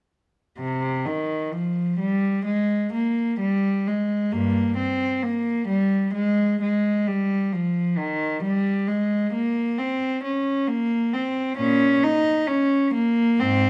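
In a free, rubato 4/4 around 66 BPM, this grave, introspective baroque-style suite movement for unaccompanied cello unfolds from 0.6 to 13.7 seconds as a fragment of a longer piece. A single bowed cello, placed up front, plays alone between G2 and Eb4 with a rich, reedy gut-string tone in period style, tuned to A4 = 438 Hz. Moderate reverb from a large studio surrounds it.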